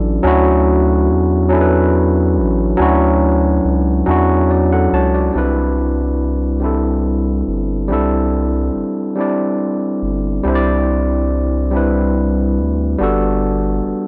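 Light reverb lends this short cut from a longer piece a gentle sense of space, with both parts sitting up front. It is a slow, tender and sensual R&B groove in 6/8 at 47 BPM, counted in dotted quarters, with a straight feel in C lydian. An overdriven tine electric piano carries the accompaniment through a combo amp, its barky, gritty tone spanning F#3 to A5. Beneath it, a round analog bass of triangle and sine tones holds the low end between G1 and E2, dark and deep with a fast attack and long sustain. The harmony rests on Dmaj9, moves to Cmaj9 at 5.3 seconds, and turns to Gmaj9 at 13.0 seconds near the close.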